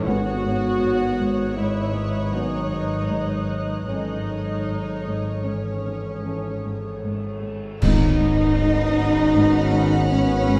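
Eerie and ominous, this 10.6-second cut from a longer suspense film score moves at 78 BPM in 5/4, with sul tasto violin sections carrying a light-vibrato melody, a second line and a floating high texture over pure viola accompaniment, a soft, dark cello riff, deep woody cello and double bass, a background clarinet, very quiet mellow French horns and trombones, a glassy, ethereal glass harmonica, hard-mallet timpani at 0.1 and 7.8 seconds, and dark cymbals with concert bass drum from 3.9 seconds, all set in a moderate scoring-stage reverb as the harmony shifts from Badd9/G# to A/G# and back for an ensemble accent at 7.8 seconds.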